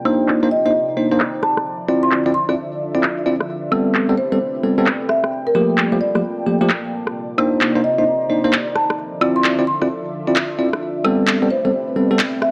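Swung sixteenths drive this bouncy, late-night two-step UK garage excerpt, where up-front electronic woodblock, handclaps and rim click move through a filter sweep alongside bright, bell-like electric piano stabs with 12-bit sampler grit and digital delay. A woody soft-mallet marimba melody enters at 0.5 s with its own delay, and two slow-attack pads sit underneath: one airy and breathy, holding sustained chords with chorus and phaser, the other a deep, moody texture in the background with chorus and reverb.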